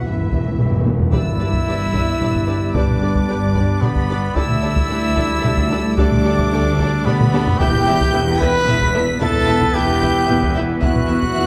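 A timpani fill opens this relentless, epic orchestral film-score excerpt in three, beneath lush violins carrying a focused, close melody over a second violin line, dark distant French horns, close-miked trombones, tight woodwinds and solo trumpet stabs, while very quiet violas, background cellos, and soft-attack double basses with portamento fill the low end, dry heavy-stick taiko drive from 0.3 seconds, a mellow, hollow silver flute adds a distant line from 1.1 seconds as the chords move from Em through G and Dsus4 back to Em, and timpani return at 7.6 seconds and again near the end on a scoring-stage reverb.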